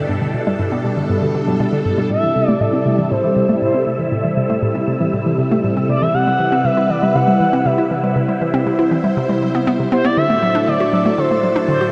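A swirling string machine opens this hypnotic, cosmic stretch of sequencer-driven space music, holding sustained chords through a phaser and ensemble chorus while a hollow, bouncy square-wave pluck repeats a riff beneath it. Above them drifts a breathy, wind-like tuned noise texture with its own built-in reverb, sitting softly in the background. At 2.1 s an expressive sawtooth lead enters up front with a smooth, resonant tone, singing a melody colored by vibrato, chorus and analog delay. The piece moves at 119 BPM in a straight 4/4 in A dorian, with the harmony passing from Gadd9 to Am7, then Cmaj7, and reaching D at 10.2 s. The whole is bathed in a huge, wet ambient reverb with a dark top end, giving this short excerpt from a longer piece a vast, floating sense of space.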